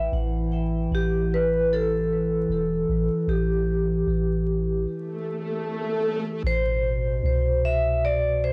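A dusty home cassette recording with vinyl crackle, a dulled top end and light digital ambience frames this dark, hypnotic trip hop fragment, cut from a longer piece, with a lazy swung sixteenth-note feel. Up front, a vibraphone struck with medium hard mallets carries the melody in a metallic, ringing tone with a medium motor vibrato, its airy shimmer softened by cassette wear and trailed by tape echo. Beneath it, a warbling, nostalgic pad of square and triangle waves holds slow-blooming chords, smeared by chorus, built-in reverb and grainy 12-bit sampler grit. A soft, round 808-style bass sits close and deep, with a sine-like body, quick attack and decaying notes thickened by transformer saturation. A break arrives around 4.9 seconds, an electronic swell enters up front at 5.1 seconds, and at 6.4 seconds the harmony moves from E minor to A minor for a new section.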